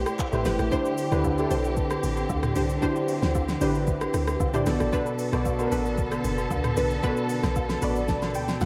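Up front, chorused analog keys with a round, detuned sawtooth-and-square tone and a sub octave carry this deep, hypnotic amapiano groove at 114 BPM, moving from Am9 to D7sus4 and then Bm7, while a lush bowed string section sustains chords with vibrato and a dark, round FM log drum bass punches below. An overdriven, produced drum kit with a soft kick, fat snare and metallic hats, along with handclaps, rim click, shaker and toms, drives the straight 4/4 feel, joined in the background by vintage, band-limited agogo bells and woodblock and a punchy, full-bodied chord stab treated with chorus and delay. The whole dreamy mix is soaked in a lush hall reverb, with a synth keys fill from 7.6 s and a drum fill at 8.1 s closing this cut from a longer piece.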